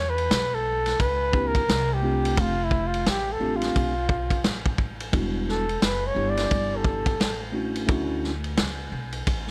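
A dry, close-sounding excerpt of mellow, cool jazz-hop at 87 BPM with a swung 16th-note feel in E dorian, where a soft-attacked flugelhorn with vibrato and scooped notes carries an up-front solo until 7.4 seconds over woody, thumpy pizzicato upright bass on gut strings, a vintage drum kit with a punchy kick, dark cymbals and a rolled-off top, and a clean tine electric piano heard through its built-in speakers from 1.3 seconds, as the chords move from Em7 through F6 and Em9 to Dmaj9.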